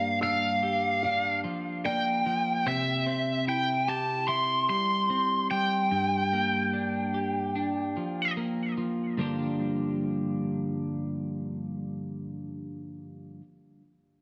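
This rock excerpt moves at 74 BPM in a straight 4/4, set in G dorian with a cathartic, cinematic mood as the harmony moves from Gm7 to C and back to Gm7. A bright, overdriven lead guitar carries the melody up front in a high register, its picked notes trailed by analog delay until it drops out at 8.3 seconds. Beneath it, a clean, compressed twelve-string electric guitar picks arpeggios in a lower range, also touched with analog delay, and continues alone until 13.4 seconds. At the opening, a felt-muted upright piano adds soft, dark arpeggios in the background, its thick felt and audible action noise giving it an intimate, vintage quality before it stops at 2.7 seconds. A wet, large studio reverb surrounds the whole mix.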